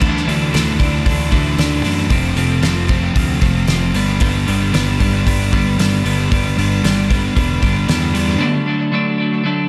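A straight, upbeat 4/4 indie rock groove opens this carefree excerpt, driven by a loose acoustic drum kit with a punchy kick, fat snare and pumping room sound, and a bright, picked electric bass. A clean, twangy twelve-string electric guitar up front and a thick, dark fuzz guitar with lush chorus play riffs over Dsus2, F and G, while dub echo on the drums and both guitars gives the small-room mix an echo-heavy feel. At 8.4 seconds the band drops out, and the twelve-string carries on alone over a D chord until 9.7 seconds.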